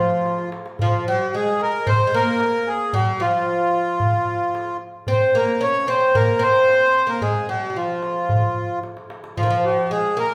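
A straight 4/4 pulse from a soft-handed clay darbuka, which enters with a fill at 0.3 s and adds another at 8.8 s, drives this passionate Arabic maqam ensemble excerpt, where a reedy, close-miked accordion carries the melody up front over a woody, plectrum-plucked fretless oud, a bright bass clarinet sounds only for the first 0.5 s, and the band plays live in a large, reverberant studio room.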